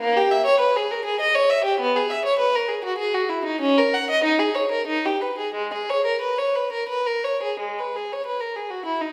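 Serene and radiant, this brief passage from a longer classical work is a baroque-style suite movement for unaccompanied violin in G# minor, set in 3/4 with a rubato feel that lets the pulse drift between 82 and 104 BPM. A single bowed violin carries the whole 9.1 seconds alone, its warm tone smooth and even, with vibrato coloring the line. The line ranges from G#3 up to F#5, and the player sits close and up front even as the room sound suggests a listener placed further back in a recital hall. A wet reverb with a 1.4-second decay blooms around the instrument, giving the solo line a soft halo. After an opening stretch that runs to 7.6 seconds, a new section begins and carries on until the clip cuts off.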